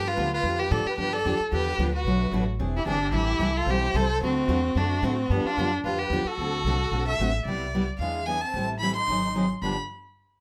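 A moderately reverberant studio sound frames this playful, charming jazz manouche swing, cut from a longer piece and tuned to A4 = 437 Hz, moving at 222 BPM in 4/4. Up front, a single close, bowed violin carries the melody with vibrato, soft attacks and expressive portamento, set in plate reverb, while a reedy, shimmering musette accordion with its wet tuning plays a second line in the background. Beneath them, a picked steel-string dreadnought guitar with fresh strings gives full-bodied accompaniment and a pizzicato upright bass on gut strings adds a woody, thumpy low end, as the chords travel from G7 through Am7 and D7 to a Cmaj9 at 7.5 seconds.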